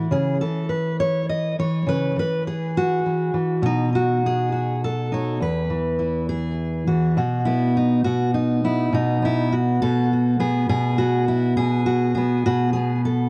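Folk piece for solo fingerpicked steel-string dreadnought guitar, pastoral and gentle, moving at an unhurried 68 BPM in a straight 6/8 and tuned slightly below standard pitch, at A4 = 435 Hz. The guitar sits up front with a warm tone and a touch of tape echo, ranging from E2 up to D#5 as it moves from C#m to B7, passes through a chordless stretch at 5.4 seconds, then settles onto B from 7.2 seconds. The sound is dry and close, like a 1970s studio session with only light reverb, and this short excerpt is cut from a longer piece.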